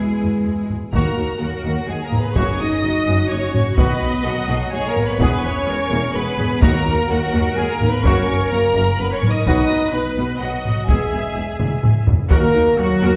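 Bathed in the reverb of a church or concert hall, this dark, heroic slice of epic orchestral film score is cut from a longer piece and moves at 127 BPM in a straight 3/4, set in E-flat Phrygian. A clear, vibrato-laden violin section carries the smooth melody, while a lush, distant second violin section sings a line beneath it and an intense viola section fills in the accompaniment. Mellow French horns hold sustained chords at the front of the brass, supported by very quiet, close-miked trombones, and a trumpet section adds stabs from the background. Rich cellos and double basses, bowed and distant, anchor the bass as the harmony cycles through E, E-flat minor, G-flat and B. A taiko ensemble struck with hard sticks drives the piece from 0.7 seconds, with a drum fill at 11.6 seconds, while timpani on E-flat land in the background at 0.9, 6.6 and 12.3 seconds.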